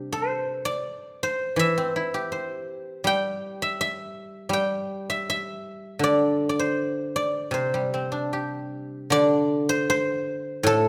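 Pastoral and serene, this short excerpt from a longer piece presents traditional Chinese plucked-string music for solo guzheng in the C gong mode, tuned slightly below standard pitch with A4 at 438 Hz. The tempo sits around 80 BPM in 4/4, though the playing moves with a free, rubato feel. The guzheng plays alone from start to finish, spanning a range from A2 up to G5, its fingerpicked tone warm, ringing and silvery. Placed up front, the instrument sounds within a moderate recital hall reverb that lends the notes a natural sense of space. The music opens with one section and shifts to a new one at 9.1 seconds, closing at 10.9 seconds.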